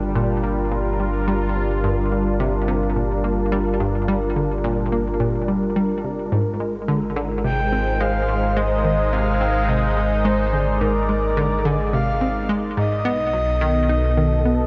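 Drenched in a wet spring reverb and heavy with echo, this excerpt of ambient, sequencer-driven space music feels hypnotic and mysterious at 107 BPM in a straight 4/4, rooted in G phrygian. A sweeping, resonant pad carries sustained chords built from sawtooth waves, detuned and slowly swelling through its filter with chorus, while a deep, dark analog bass of sawtooth and sine holds the low end up front. From 0.2 seconds an analog pluck plays a riff, its fast-attack, decaying notes colored by chorus and delay and shaped by a filter sweep over a noise layer. At 7.4 seconds a breathy, flute-like synth lead enters with the melody, its triangle-and-sine tone gaining a sub octave, gentle vibrato and lush chorus with delay. The harmony moves from Gm7 to Abadd9 and on to B7, keeping the mood suspended and otherworldly.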